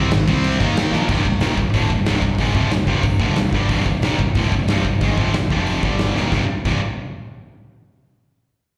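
Two bright, high-gain distorted guitars open this aggressive, epic heavy metal excerpt together with the bass, both guitars playing a picked riff with slapback echo: one sits up front and the other in the background. Underneath, a fingered electric bass with overdrive and fuzz adds a growly low end. A big acoustic rock kit drives the straight 4/4 groove with a punchy kick, a medium-tuned snare, hi-hat and crash cymbal, and it sounds dark and smooth with a big-room character. Drum fills land at 0.9 and 6.2 seconds, marking the shifts into and out of the long middle section, where the harmony moves through a minor chord and heavy power chords. The whole performance is heard as a live gig through the venue's PA, with a recital hall ambience, and the short fragment is cut from a longer piece.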